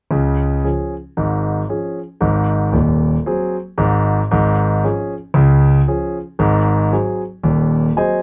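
A concert grand piano plays alone in this short stride jazz excerpt, its deep bass and smooth, vintage tone sitting up front with audible action noise that lends an intimate feel. At 115 BPM in 4/4 with a swung eighth-note feel, the exuberant passage in Db major moves between Db and Ab7 chords, spanning from Eb1 up to Ab5. Light reverb surrounds the piano for the full 8.2 seconds.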